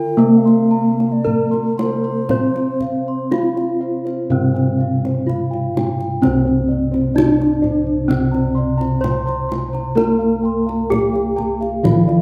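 A rough home-demo mix with light reverb and a small-room ambience frames this shimmering, ceremonial cut of Javanese gamelan in a straight four. A dark, up-front bronze metallophone carries the melody with a wooden mallet, its paired tuning producing shimmering beats. Beneath it a second metallophone struck with padded disc mallets plays a soft, mellow accompaniment, a close-miked, dry and full metallophone spins arpeggios alongside round, smooth bossed gongs, and boxy bossed gongs sit in the background on the bass line from 0.2 s. A pure, hollow bamboo xiao adds a tongued second line with vibrato until 3.6 s, while a deep, distant kendang played with soft hands enters at 0.5 s.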